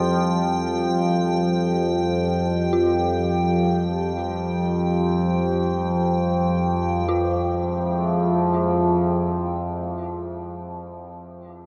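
An overtone-sweeping drone stands up front in this fragment of dark ambient music, its sawtooth and sine layers, ring modulation and resonant, moving overtones swelling in with a slow attack and sustaining into a long release, coloured by chorus and its own reverb. Behind it, a deep, moody analog pad holds detuned chords with a sub octave, thickened by chorus and phaser. An eerie, inharmonic FM synth bell plays mellow arpeggios in the background, its fast-attack notes decaying into a diffuse ambient delay. High above, an icy, crystalline glass pad adds an airy, bright texture of unison sines, noise and wave-folded tones on one sustained pitch until 7.1 seconds. The music drifts in free time in F harmonic minor, moving from a suspended F chord to F minor at 7.1 seconds, and the analog pad ends at 10.4 seconds, while the huge, wet reverb and shadowy production leave an unsettling, desolate mood.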